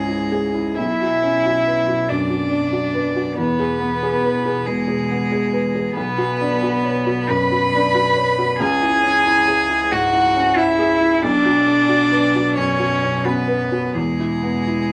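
A reflective, melancholic neoclassical passage for piano and strings opens with all four parts together. A felt-muted upright piano, dark and intimate with audible action noise, carries the accompaniment, while a single violin, pure and floating, bowed sul tasto, sings the melody above a cello second line with light vibrato. Beneath them one double bass player with an airy bow holds the low end, and the music moves in a rubato 4/4 at 91 BPM in B dorian, circling C#m, Bmadd9 and E, with moderate studio reverb framing this short cut from a longer piece.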